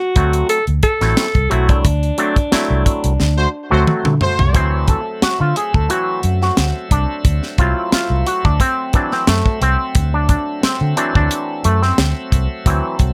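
A breathy, subtoned alto saxophone opens this strutting, playful funk excerpt over a dry, tight drum kit with a high-tuned snare, a dark, round, foam-muted electric bass and a stringy auto-wah clav; a smooth-topped horn section with light vibrato and analog delay slips in at 3.4 s amid a band accent and drum fill, and from 4.5 s the clav takes a solo over shouting, lightly overdriven tonewheel organ chords with key click on a slow rotary speaker, in a light reverb.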